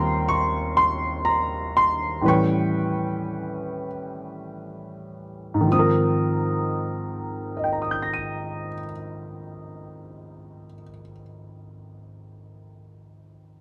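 A late-night, romantic jazz ballad in Ab major, this slow 4/4 passage swings gently at 31-43 BPM, with a solo concert grand piano, tuned to A4 = 435 Hz, sitting up front from 0.0 to 13.6 seconds. The piano sounds intimate and natural, with deep bass and audible action noise, while a moderate large-studio reverb gives the dark, warm production a soft bloom. The opening phrase slows over its first 5.7 seconds, moving from Eb13 to A7 before settling on Ab69 for the second phrase.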